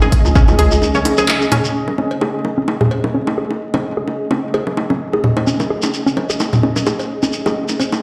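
Swung sixteenths at 129 BPM in 4/4 drive this clinical, sparse minimal techno, where a punchy overdriven kick, clicky hi-hats with handclaps, and a bouncy FM bass appear only briefly before 1.6 s, while an up-front overdriven layer of bongos, cowbell and congas with tape echo, a hollow, detuned square-wave pluck riff with chorus, echo and sidechain pumping, a grainy close shekere that returns at 5.5 s, and a dark, cloudy granular pad carry on through a large, reverberant studio sound.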